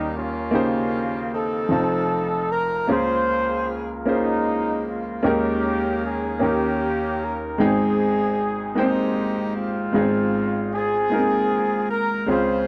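A dry, close recording with a 1970s studio character and little reverb puts both parts up front in this short gospel excerpt, which is cut from a longer piece. In a slow, reverent yet jubilant 6/8 at 51 BPM in Ab major, a warm horn section carries the melody in jazz-style ensemble voicing, with light vibrato and soft attacks. A clear, present grand piano accompanies throughout, moving from Eb7 through F7 and Bbm7/Db, past an Eb7sus4 to a resolving Abmaj7 at 7.6 seconds before settling on Ab6.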